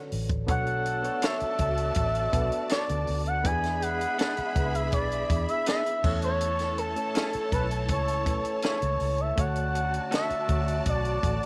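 A reedy electric piano with fast tremolo and distant, punchy horn stabs open this silky, bittersweet 1970s-style soul passage at 81 BPM in B dorian, joined at once by a round, foam-muted fingered bass and a dry cocktail drum kit with dark cymbals, then at 0.5 seconds by a smooth sawtooth lead gliding with portamento, vibrato and chorus over lush bowed strings, while a slightly broken-up, lo-fi guitar riff sits in the background from 1.2 seconds, set in light small-room reverb over chords moving from Bm9 through E7 and A to Dmaj7.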